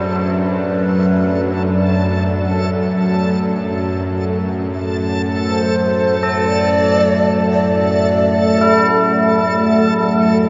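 A tense, string-like bowed drone sits up front beneath a deep, moody pad of sustained chords, soft padded tubular bell arpeggios with tape echo, a reversed, swelling granular texture and a breathy bamboo shakuhachi melody entering at 0.2 s, all suspended in free time within a vast, cavernous reverb that gives this ominous dark ambient excerpt its dim, echoing weight.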